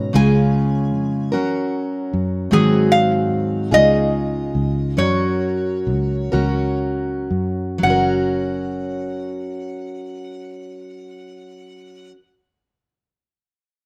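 A nasal, metallic lap resonator guitar played with slide and fingerpicks carries a hopeful, pastoral melody with slapback echo, over a full-bodied jumbo steel-string acoustic guitar picked on fresh strings with audible finger squeak and a round, dark, foam-muted electric bass, in this short cut of acoustic folk in F# major and a straight 6/8 at 38-51 BPM, moving through C#, F#, G#7 and C#add9 as the pace eases from 2.5 to 7.8 seconds, all captured dry outdoors with both guitars up front.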